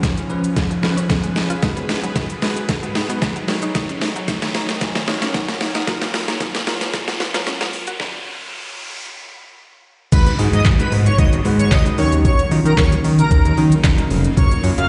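This dance-pop cut sounds like a live gig heard through a venue's PA, with a light recital-hall reverb and a top end that stops short of the brightest frequencies. Driving and confident, it opens as a build-up: a bell-like, clean tine electric piano carries the accompaniment with slapback echo and sidechain pumping, and a shimmering, ethereal pad holds sustained chords in the background. Beneath them, a woody, round mallet-like synth pluck runs arpeggios through chorus and delay. Up front, a smooth R&B drum kit with a knocking kick, deep snare, hi-hat, shaker, handclaps and crash cymbal plays a fill, while background riser and downlifter effects and a filter sweep build the tension, and the electric piano adds a brief fill of its own. The pluck stops at 8.0 seconds for a break, and at 10.1 seconds the drop arrives with a fat, thick sawtooth analog bass and an airy, dreamy lead melody wrapped in chorus, vibrato and delay. 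The harmony moves through minor-seventh and major-seventh chords, giving the groove a polished lift.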